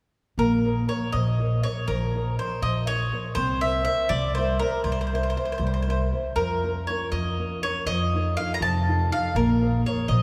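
A rubato 6/8 lilt carries this short passage, cut from a longer Italian folk serenade, passionate and romantic in mood, with all three parts entering together at 0.4 seconds and playing through to 10.2 seconds. An up-front mandolin sings the melody with a mellow, woody, double-string tone, while a small-sounding nylon-string guitar, thumb-plucked with audible finger squeak, supplies the accompaniment. Beneath them, an up-front pizzicato upright bass on steel strings adds a thumpy low end, and the group sits in a wet church reverb with a long, resonant tail.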